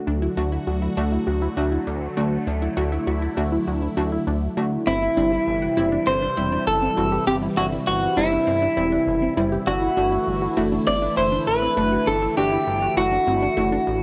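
A clean, picked electric guitar sits up front with a compressed tone, subtle chorus, cassette tape and analog delay, carrying the melody from 4.9 s in this wistful yet upbeat 100 BPM synth-pop cut, over a swirling, phased analog pad, a punchy detuned unison pluck arpeggiating in the background, a glossy pulse-width-modulated chorused synth bass, and a round, bright analog pluck accompaniment, all moving from D to C to Dadd9 in a wet studio ambience on a home cassette recording.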